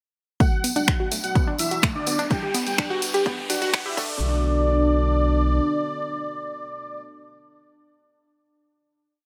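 Melodic techno at 126 BPM in B minor, cinematic and dramatic, opening on a Bm7 build where an overdriven, punchy four-on-the-floor kick, bright overdriven house hats and snaps, jingly hand-played tambourine sixteenths, a riser from 1.1 s and a rolling sixteenth-note round analog bass drive a filter-swept, wave-folded analog pluck arpeggio whose 6-step loop drifts against the bar. A thick, detuned unison lead plays a repeating riff with delay and its own filter sweep, doubled an octave higher by a fat, nasal polysynth, while a moody, chorused dark pad holds sustained chords in the background, all of them pumping with sidechain. After the harmony moves through Gmaj7 back to Bm7, the drums, tambourine and riser drop out by 4.2 s and the pluck stops soon after. The lead, polysynth and pad ring out as a final hit in a lush hall reverb, with the bass lingering beneath them until 5.6 s.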